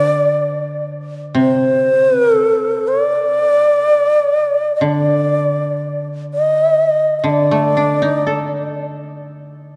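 A breathy, reedy shakuhachi with vibrato and a soft attack carries the melody from the start over a woody, fingerpicked koto accompaniment in this calm, austere passage of Japanese traditional chamber music, cut from a longer piece and moving in a free rubato around 60 BPM in 2/4, with both instruments up front in a lingering church reverb until the shakuhachi stops at 8.8 seconds and the koto sounds alone to 9.8 seconds.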